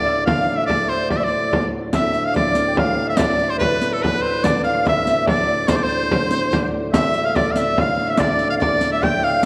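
A dark, warm production sits in a wet recital hall with a 1.5-second reverb tail, giving this medieval dance excerpt an ancient, mysterious air. At 144 BPM in a straight 3/4 and D dorian, a bright shawm carries the melody up front, its folk-style line coloured by vibrato, scooped notes and a tape echo. In the background, a Celtic harp adds a fingerpicked, ringing second line, and a musette accordion plays a second line of its own with a shimmering, close-miked sound from its wet musette tuning. A pedal harmonium holds a low, breathing drone that carries the boxy character of a small room. A deep, large frame drum enters at 0.1 seconds, and a riq with dark, band-limited jingles joins in the background at 1.9 seconds, where the opening section begins again.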